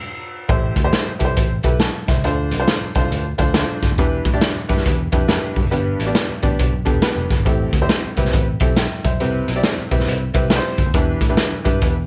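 Uptempo 1960s-style soul with an urgent, driving mood, swung eighth notes and a tuning set slightly below standard pitch. The clip opens with a short piano fill and a band accent before the full groove settles in at 0.5 seconds. A raw garage drum kit sits up front with a punchy kick, a medium-tuned snare and hi-hat, its sound saturated and gritty with a rolled-off top and a pumping small-room character. Beneath it, a vintage picked electric bass gives a dark, round, foam-muted tone through an amp, while a clear upright piano with a woody, worn and slightly detuned voice and short sustain plays the accompaniment up front. The chords move through Am7, Dm7, Em7 and G, then return to Am7 before Cmaj7 and Em7, and the whole is placed in a light studio reverb. It is cut from a longer piece, with the band playing until about 12 seconds.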